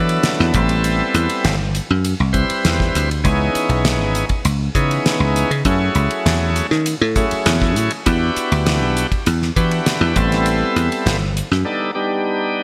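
Electric jazz fusion with a slick, funky mood, moving at 100 BPM in a straight 4/4, in this short excerpt cut from a longer piece. A full, shouting tonewheel organ carries the harmony through a slow rotary speaker and light overdrive, sounding until 12.6 seconds over a progression rich in minor ninth chords that closes on a B7alt. Underneath, a dry thumbed slap bass sits up front with a bright, punchy, foam-muted attack, stopping at 11.6 seconds. The drum kit has a damped 70s character, with a fat snare, tight kick, dark cymbals across hi-hat and ride, and a gated reverb that keeps its airy, polished sound contained. The whole mix has a glossy 1980s digital production sheen, set in a lush hall reverb blended with a small room.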